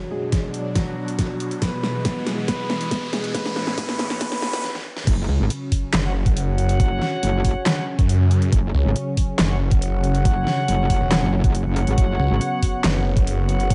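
A snarling, detuned sawtooth bass anchors this chaotic, aggressive slice of heavy wobble dubstep, growling low and up front with a resonant moving notch from 5.3 seconds, just after the drop hits at 5.1 seconds. Before that, a dark, mellow baby grand piano carries the melody through a diffuse ambient delay over a lush supersaw pad that pumps against the sidechain, its phaser and low-pass filter sweep tightening the build-up, while an electronic riser climbs beneath. Drum fills drive the build, and a brief stop at 4.6 seconds, punctuated by a final drum fill, sets up the drop, which lands in half-time. The drop pairs the growling bass with a metallic, wobbling FM bass, chorused and distorted, while an overdriven dubstep kit with a huge snare, bright hats, claps and crashes sits over a knocking, tape-warm electronic kick. From 6.0 seconds a brass ensemble adds soft-attack stabs with light vibrato, tinged by delay. 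The whole mix is dreamy and soaked in plate reverb, with a dulled top end that keeps the aggression hazy rather than brittle.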